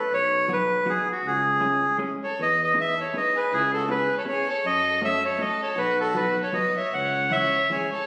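A reedy bandoneon leads this nostalgic, charming musette waltz, sitting up front with a boxy, small-room quality as it carries the melody across the full eight seconds of this short cut from a longer piece. Beneath it, a mellow tuba supplies the bass from 0.1 seconds, close-miked and lightly vibrato-tinged, with scooped notes and a jazz-style touch. A clean, picked hollow-body electric guitar fills in the accompaniment in a dark, compressed tone, while a single bowed violin enters at 2.2 seconds with a woody, smooth-topped second line shaded by vibrato. The swung triple-time lilt moves through minor-leaning harmony, settling on C#m at the close. The whole blend sits in a moderate recital-hall reverb, captured on a phone in the room, with added studio reverb and compression.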